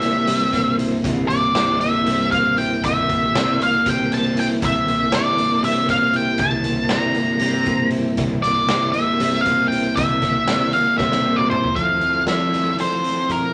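An up-front, dark octave-fuzz lead guitar carries the melody through this hypnotic, kaleidoscopic psychedelic rock piece in 7/8, over a slightly broken-up guitar riff played through a small old amp with a rotary speaker, a round overdriven fuzz bass in the background, a gritty garage drum kit with a punchy kick and a bright stone-room sound, and a mellow, evolving analog drone with chorus that drops out at 11.8 seconds, as a drum fill ends and the harmony moves from C7 to Fmaj7, all set in a reverberant club room.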